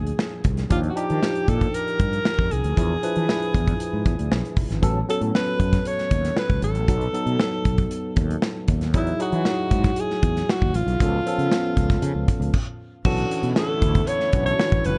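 A breathy alto saxophone opens this slick, nocturnal slice of polished 1980s jazz-funk pop, carrying the melody up front with a light vibrato, a smooth top and a touch of digital delay. Beside it, a barky tine electric piano plays bright, clean accompaniment through a combo amp, colored by analog chorus, while a growly fretless electric bass sits direct and amped underneath. A modern studio drum kit joins almost at once, acoustic and close in a small room, with a medium-tuned snare, a tight kick, hi-hat and crash cymbal, its top rolled off for a dark, smooth sound. The chords move through rich extended harmonies in a straight, steady groove until the band stops briefly at 12.5 seconds. At 13.1 seconds a new section begins, and a soft-attack sawtooth pad enters in the background, detuned and sustained with chorus and tremolo. The whole production is dark and warm, with light reverb and small room ambience, and the passage is cut from a longer piece.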